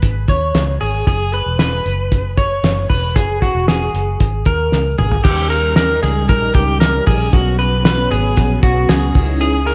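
A twangy, slightly broken-up electric guitar picks bittersweet, restless arpeggios through vibrato and delay in this reverb-soaked, dreamy jangly indie pop fragment, carried by a round, foam-muted fingered bass and a muffled, cloth-damped drum kit with a fat snare and dark cymbals whose fill at 4.7 s ushers in mellow, warbling string-machine cellos at 5.2 s.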